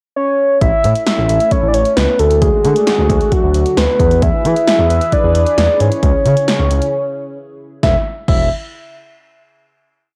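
A straight 133 BPM beat from a punchy, overdriven analog drum machine of kick, snare, hi-hat and crash drives this upbeat, nostalgic synth-pop piece, a cassette home recording in light digital ambience, where a round, dark octave-layered synth lead with vibrato sings a motif-based melody from 0.2 s, a smooth gliding sequenced bass and the drums arrive at 0.6 s, and a swirling, detuned phased analog pad holds sustained chords over A, D, E and C#m before a break at 6.9 s and a final held note.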